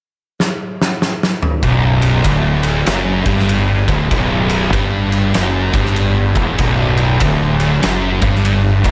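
Lightly reverberant and heavy, this sludgy, ominous stoner and doom metal excerpt has a gritty, saturated sound. It opens with an oversized, low-tuned acoustic drum kit up front, playing a fill from 0.4 seconds in a big, pumping room. At 1.6 seconds the band lands on a B minor chord: two thick fuzz guitars set back in the mix play a low, distorted, picked riff, one dark and the other mellower. A fingered electric bass with overdrive and fuzz plays an octave below, its tone bright and growly. The drums carry on with a fat snare, a boomy kick and ride cymbal under a swung, lumbering 4/4 feel until the cut ends at 8.9 seconds.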